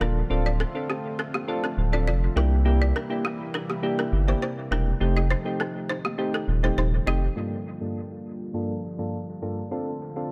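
A straight 4/4 afrobeats pulse at 102 BPM sets a sultry, hypnotic mood in G minor in this short cut from a longer piece. A deep, saturated sub bass sits up front with a thick, sustained tone, while a balafon plays a woody, buzzing riff struck with rubber mallets, close-miked and dry apart from its dub echo. Soft, round electric-piano-like synth keys carry the accompaniment with chorus, low-pass filtering and dub echo. Behind them, a smooth analog pad holds sustained chords with a slow attack, long release and its own chorus. The harmony moves through Dm7, C7 and F7, and after the balafon and bass stop, a second section begins at 7.4 seconds on Gm7, leaving the mellow keys and pad to reach Dm7 before the end at 10.3 seconds. The echo-heavy mix adds light reverb.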